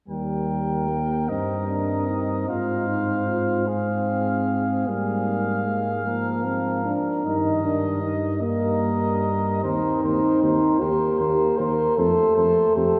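A stately, triumphant brass quintet opens at 0.1 s, with a mellow trumpet carrying the melody over a flugelhorn second line with light vibrato, a dark, smooth-topped French horn accompaniment and a tuba bass set up front, moving in a slow, rubato 6/8 at 50 BPM in Eb major. A euphonium joins at 1.3 s in the background, distant and roomy like the trumpet, as the classical-style harmony passes from Eb through Fm/Ab and Cm7/Eb to F. A long cathedral reverb bathes this brief passage, which is cut from a longer piece.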